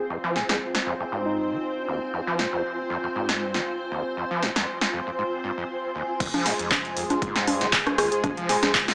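This hypnotic, gritty acid house excerpt in F minor at 118 BPM opens at 0.0 seconds with a gentle, keys-like FM synth lead carrying the melody over lush, vintage string-machine chords and a cloudy, blurred granular pad, with the strings and pad pumping from sidechain compression. A squelchy, resonant acid bass riff with distortion and tape echo comes in almost at once. It is soon joined by an up-front, overdriven analog drum machine playing congas, crash cymbal, handclaps, hi-hat, rim click and a punchy snare, re-recorded in a large room. The drop arrives at 6.2 seconds, when an electronic kick drum enters along with a deep, round analog bass that sits dark in the background under tube saturation. The lead returns briefly near the end, colored by chorus, vibrato and cassette tape, while a light 16th-note swing, moderate studio reverb and a small-speaker sound shape the whole mix.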